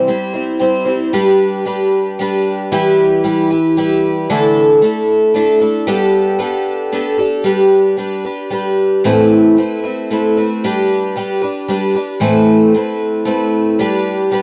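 A dry, close 1970s-style studio sound puts a lone picked twelve-string acoustic guitar up front, its shimmering, octave-doubled tone carrying a boxy edge. This hopeful rock fragment moves at 114 BPM in a straight 3/4, in G major tuned a touch low to A4 = 435 Hz, and spans A2 to C5. The opening passage wanders through C, G, Em, Dsus2 and Gadd9 before settling at 7.5 seconds into an alternation between G and Amadd9 that runs until the cut at 14.4 seconds.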